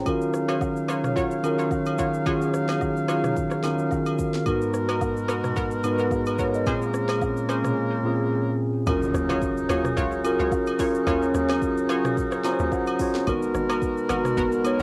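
A hazy, cassette-worn home recording in a small, damp booth carries this late-night, hypnotic amapiano excerpt in Eb minor at 109 BPM, with a lightly swung 16th feel. A mellow tine electric piano sits up front, playing clean accompaniment through plate reverb over sustained, vibrato-rich woodwind chords that pump under sidechain, while a round, warbling analog pluck adds chorused, echoing stabs in the background and an electronic afro-pop kit with deep kick, sharp snare and smooth hats plays alongside close, dry agogo bells and woodblock. The drop lands at 8.9 seconds with a distant impact and a tight, punchy FM log drum bass, and the electric piano slips in a short fill at 12.2 seconds. Across the excerpt the chords move through Ebm9, Abm9 and Bbm9.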